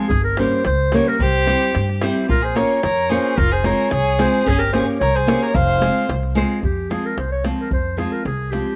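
Light reverb frames this short fragment of fiery, virtuosic Balkan wedding-band folk in 2/4. A mellow, distant clarinet carries the solo melody up front over a bright, fingerpicked nylon-string guitar, while a woody, thumpy pizzicato upright bass and a deep, close davul anchor the straight groove. A rich, focused bowed violin with vibrato adds a second line from 1.2 to 6.1 s, and the music moves through diminished, major and minor chords before shifting into a new section at 6.6 s.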